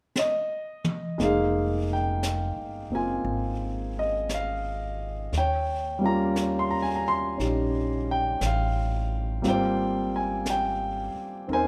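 An intimate, up-front concert grand piano carries this melancholic, smoky jazz ballad in F minor, its smooth, vintage tone full of deep bass and audible action noise as it accompanies from G3 to C6. The tempo is a slow 58 BPM in 4/4 with a swung eighth-note feel. The brush kit opens with a fill on brushed snare, hi-hat, snare and toms from 0.2 seconds. It sits distant and roomy, with a high-tuned snare and a rolled-off top. At 1.2 seconds a woody, dark upright bass with gut strings joins, plucked and thumpy in its low register. The harmony settles on Fm11, moves to Eb13 and arrives at Abmaj13, all softened by a light reverb in this warm fragment cut from a longer piece.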